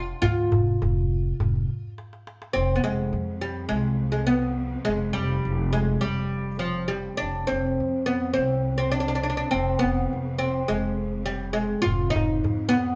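Arabic maqam ensemble in F maqam nikriz at 103 BPM, soulful and hypnotic, with a woody plectrum-plucked fretless oud carrying the melody up front over a growly, dark pizzicato upright bass, while a close, dry clay-shell darbuka played with hard hands drives the opening until its fill and drops out at 2.5 seconds, when a lush bowed cello section slips in behind as a vibrato-rich drone on F, and the darbuka returns at 11.9 seconds, all in one live room with a reverberant studio sheen.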